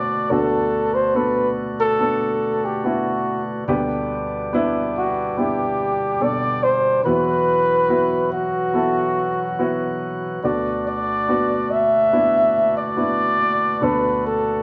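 A mellow flugelhorn carries the melody up front in a jazz-style solo, its light vibrato and scooped notes giving this slow pop ballad at 71 BPM a heartbroken, longing mood. Beneath it, a warm baby grand piano plays accompaniment with a natural, short-sustained tone, sitting close and intimate in the mix. A reedy, clean tonewheel organ holds sustained chords, its bright voice coming through a stationary speaker. The harmony moves from D6 to G/D, then Esus2, before settling back on D6 at 10.4 seconds, giving the passage a gently yearning quality. The trio sounds like a band playing together in one room, bathed in a wet large-studio reverb with a soft, rolled-off top end, and the 14.6-second passage is cut from a longer piece.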